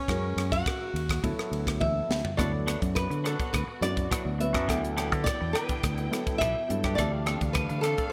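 Slick and funky, this electric jazz fusion excerpt has a bright 1980s-style digital sheen and a straight 4/4 feel. A fingerpicked flamenco guitar carries the melody through lush chorus and delay, while a breathy tenor saxophone with vibrato and scooped notes adds a brief second line in the opening 1.6 seconds. Beneath them, a dark, vintage grand piano with audible action noise plays accompaniment through analog chorus, and a punchy fingered electric bass anchors the low end. The up-front fusion kit, with its high-tuned snare, tight kick, ride and rim clicks under gated reverb, plays a fill just before 2.4 seconds. At that point an expressive bowed string section with portamento enters in the background, along with a twangy, compressed clean electric guitar playing stabs with subtle chorus. The chords move from F# through D69 and Gmaj13 to F6/D.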